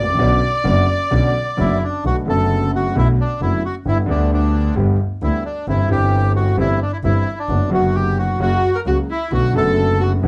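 A reedy, up-front bandoneon carries the melody over a clear concert grand piano with a deep bass and a smooth, bowed double bass with vibrato, while a bowed violin with expressive portamento adds a second line until 1.8 seconds and returns at 8.4 seconds, in this dramatic, passionate tango fragment in B minor at 132 BPM, played rubato with light reverb and a dark production.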